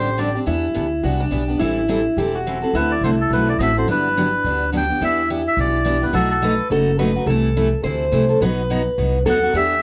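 A fast, playful gypsy-jazz swing at 212 BPM in G major opens with a reedy, nasal melodica flicking in over two picked steel-string acoustic guitars, one full-bodied and up front comping the chords, the other fresh-stringed and bright with finger squeak tracing a second line, and a woody, thumpy pizzicato upright bass. The melodica returns at 2.8 s for its swinging melody and carries it on as the harmony turns to E minor at 5.0 s, moving through chords like Em7, B7 and Am/C. A worn, warbling cassette-tape quality with drifting pitch and moderate studio ambience colours this short cut from a longer piece.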